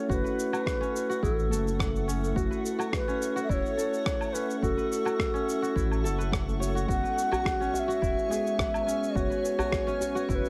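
Organic downtempo in F# minor at 106 BPM, this warm, earthy excerpt sets an airy, bright low ney melody with delay over muted, felt-like synth keys with chorus and sidechain pumping, ringing, crisp kora arpeggios with digital delay, and a blurred granular cloud pad sustaining chords in the background, moving from F#m7 to E6 at 6.9 seconds. Underneath, a round, dark analog bass sits up front with sidechain pumping beside an overdriven electronic kick and gritty, small-room cabasa, woodblock and rim click. At 7.3 seconds a tight, cracking djembe joins, followed at 7.4 seconds by a twinkling granular texture with an octave-up shimmer, all in light reverb and digital ambience.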